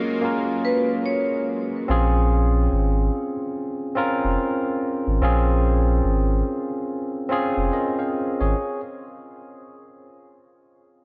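A dreamy, reverb-soaked mix in a moderate cathedral space opens this reflective, hazy lo-fi hip hop fragment in Bb minor, moving at 72 BPM in 4/4 with a swung sixteenth-note feel. It begins with a break over a Gbmaj9 chord, where a metallic, ringing vibraphone played with medium hard mallets carries a brief melody through a low-pass filter and delay, its tone dark and smooth with a slow motor vibrato, before falling silent at 1.4 seconds. Beneath it, a thick, detuned unison pad with chorus and a slow attack holds sustained chords until 1.9 seconds. A barky, clean tine electric piano runs through the whole fragment, up front in the mix, its combo-amp tone given a cassette tape wear and a low-pass filter. At 1.9 seconds the harmony shifts to Bbm9 and a deep, full sub bass with an octave enters up front, its fast attack and sustained sine-and-triangle tone anchoring the low end until 8.5 seconds.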